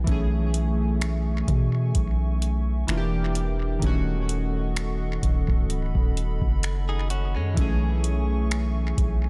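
Longing and moody, this slow contemporary R&B passage, cut from a longer piece, sways with a light swing on the sixteenths. A booming analog drum machine sits up front with a deep kick, metallic hi-hats and finger snaps, while a long 808-style bass with a mellow sine tone decays beneath it. Detuned analog keys, colored by ring modulation and a filter sweep, carry the accompaniment through chorus and tape echo, and a hollow, flute-like pad holds soft sustained chords behind them. The harmony moves from B13sus4 through Em7b5 and D#m7b5 before returning to B13sus4 at 7.6 seconds. A clean, direct-recorded electric guitar adds bright picked arpeggios with tape echo from 6.9 to 7.8 seconds, and the mix is bathed in echo-heavy digital ambience.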